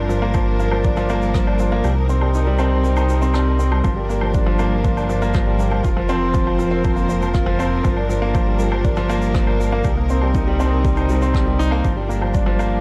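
Hypnotic and cinematic, this piano and strings electronica fragment sets a clear, intimate grand piano riff with audible action noise and delay up front over veiled, con sordino strings holding sustained chords that pump with sidechain. A round, deep analog bass with tube saturation and sidechain pumping anchors the Gm7, Cm7 and Fsus4 changes, while a punchy, overdriven electronic kick drops out between 1.8 and 3.8 seconds. Warm shaker, woodblock and rim click with a rolled-off top sit low in a small room with light reverb.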